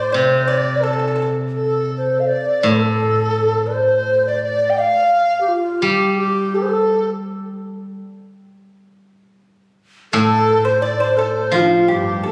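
Loosely paced in a rubato 2/4, this tender, graceful fragment of Chinese chamber music sets an airy, reedy low xiao melody with vibrato alongside a mellow large dizi whose buzzing membrane colours its second line. Beneath them, a silvery, ringing steel-string zither sits up front in the accompaniment, while a dry, percussive pipa played with fingerpicks appears only briefly at the start and again near the close. The winds pause at 7.1 seconds and return at 10.1 seconds, and a dark, woody bowed cello with portamento slips in at 11.9 seconds, all heard through a phone recording in the room with a wet scoring-stage reverb and compression.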